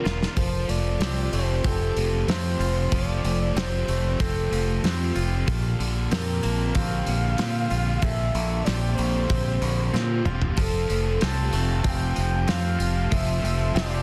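Shoegaze-leaning dream pop rock in F major at 94 BPM, this dreamy, blissful excerpt floats a breathy, flute-like synth lead with chorus, vibrato and tape echo over a dark, fuzzed-out guitar riff alongside a bright, twangy clean electric guitar riff treated with reverse reverb, while a shimmering, octave-doubled twelve-string acoustic picks arpeggios in the background. A growling, overdriven fingered bass and a loose, punchy indie drum kit sit up front, with drum fills at the start and around 9.9 seconds, and the harmony moves from F to Bbadd9 and back to F. A faint, smooth analog pad appears only briefly at the opening and returns from 10.6 seconds, all within a dense, heavily limited mix in light small-room reverb.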